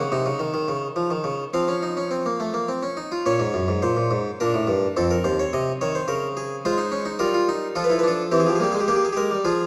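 A lone harpsichord, plucked and bright with one set of strings in the French style, sits up front in this solemn, serious baroque-style fugue in three parts, moving in triple time with a straight feel. Its lines span Eb2 to Gb5 as the harmony moves through minor and seventh chords, and a new section begins at 3.3 seconds before the excerpt breaks off at 9.7 seconds. A moderate recital-hall reverb surrounds the instrument, and the dark production adds a layer of vinyl crackle.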